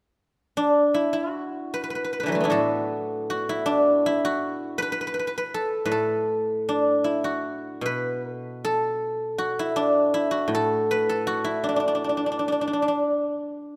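A solo guzheng enters at 0.6 seconds, its silvery, ringing tone placed up front in this pastoral, flowing excerpt of Chinese traditional music for plucked strings. Played with fingerpicks, the acoustic instrument moves through a range from A2 to B4 in the D gong mode, tuned slightly below standard pitch. The pulse sits around 79 BPM in 2/4, though the rubato feel lets the phrasing breathe freely. After a brief opening gesture, a longer passage begins at 1.3 seconds and carries the music until the guzheng's last notes sound at 13.8 seconds. A moderate concert hall reverb with a 2.3-second decay surrounds the strings, giving the solo line a spacious, glowing resonance.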